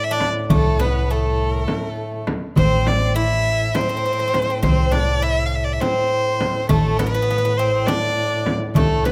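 Close, detailed microphones and light reverb frame this melancholic, soulful Turkish makam ensemble in 7/8, where an up-front, bowed violin with rich vibrato carries the melody over a distant, mellow duduk drone with scooped notes, a bright, metallic Greek bouzouki second line, a crisp metal-shell darbuka and a deep, saturated frame drum that both enter at 0.2 seconds, and a woody, growly pizzicato upright bass that joins at 0.5 seconds.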